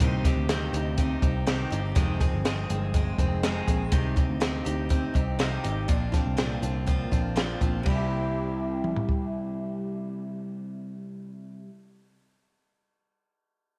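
A straight 122 BPM pulse in 4/4 drives this wistful, restless jangly indie pop excerpt in C minor, where a compact cocktail drum kit with a punchy kick, high-tuned snare and dark, rolled-off top sits up front until 9.2 s, a round, foam-muted vintage electric bass anchors the low end, a woody steel-string acoustic guitar with old strings picks out accompaniment, and an electric guitar through a small old amp spins slightly broken-up, compressed arpeggios bathed in ensemble chorus and tape echo, all set in a moderate echo-chamber reverb with small room ambience as the Cm, Fm7 and Bbadd9 changes move to C at 7.9 s.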